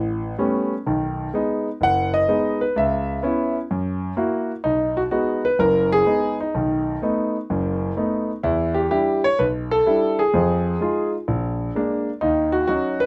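A swung 4/4 groove at 127 BPM carries this short, sophisticated solo jazz piece in B major, cut from a longer performance and tuned slightly low at A4 = 439 Hz. A concert grand piano plays alone throughout, its worn, natural tone sitting up front with deep bass reaching down to F#1 and light reverb around it. The harmony moves from A9 and B6 through C#m7 and F#7, then shifts at 4.6 seconds into a passage of B7, Em7, Fm7 and A#7 before settling on D#m7, all in a rough home-demo sound.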